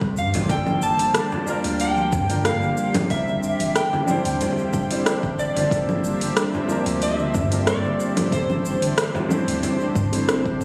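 A straight 4/4 groove at 92 BPM drives this hypnotic organic downtempo excerpt in G dorian, built on an overdriven deep kick and an up-front deep house kit of congas, metallic hi-hats, rim click and shaker, with a distant frame drum in the background and a round sine sub bass below; a felt-muted upright piano with delay and a cloudy granular pad both pump with sidechain compression through chords from Gm7 to Am/G, while a steel tongue drum rings out mellow arpeggios with delay and a slightly broken-up electric slide guitar carries the melody from 0.2 to 10.2 seconds, all set in an echo-chamber reverb with a phone-in-the-room character.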